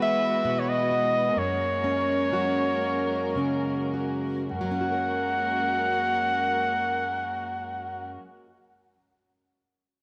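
Nostalgic and heartfelt, this short cut from a longer acoustic folk-pop ballad moves at a gentle pace in three, easing as it slows down through its first 4.5 seconds before settling into a second passage. A clear, punchy flugelhorn carries the melody up front with pop-style vibrato, sounding close-miked and soloistic. Beneath it, a plugged-in jumbo steel-string acoustic guitar is fingerpicked with fresh strings and a full-bodied tone, sitting up front and ringing on a little past the others to 8.6 seconds. A dark, reedy studio string section bowed in a period style lends gut-string sustained chords with light vibrato from a distance. The harmony moves from Eadd9 to F#add9, and a moderate echo chamber reverb gives the recording a spacious ambience.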